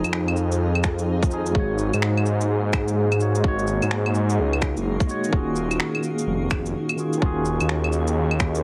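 A tremolo-laden tine electric piano through a combo amp, a blurred granular cloud pad with slow-attack chords and 12-bit grit, and a menacing detuned saw bass with a filter swell and tube saturation all pump together from the start of this nocturnal, wistful future garage passage at 127 BPM in Eb dorian with a swung 16th feel, joined from the outset by overdriven electronic shaker, claves, finger snaps and cabasa, before a tight, up-front overdriven kick enters at 0.8 seconds beneath the Fm7, Ab7sus4 and Ebm11 chords, all squeezed into a heavily compressed, radio-like sound with light reverb.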